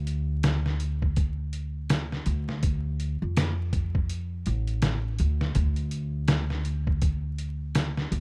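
A gritty, pitched-down sampler-style drum kit sits up front from 0.1 seconds, its compressed hi-hat, thumpy kick and medium-tuned snare sounding as if re-recorded in a small room. Alongside it, a woody, up-front pizzicato upright bass with steel strings plays between A1 and F2 in this melancholic, hypnotic trip hop excerpt in D minor at 82 BPM, swung on the sixteenths. The rough home-demo mix is dry, with vinyl crackle.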